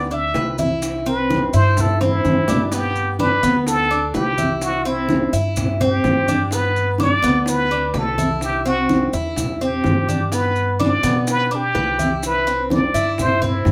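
Sunny and warm, this fragment of Cuban son and guajira opens with a breathy, clear plunger-muted trumpet playing a jazz-style solo up front with wah-wah inflections, scooped notes and light vibrato, while a metallic, double-strung tres picks arpeggios, a woody, dark upright bass on gut strings thumps pizzicato beneath, low-tuned thick-skinned congas and round, soft-handed bongos sit distant as if in a large room, and grainy, mellow maracas stay close, until a drum fill from 2.0 to 2.7 seconds carries the live band into a new section moving between G and C chords in a moderate studio ambience.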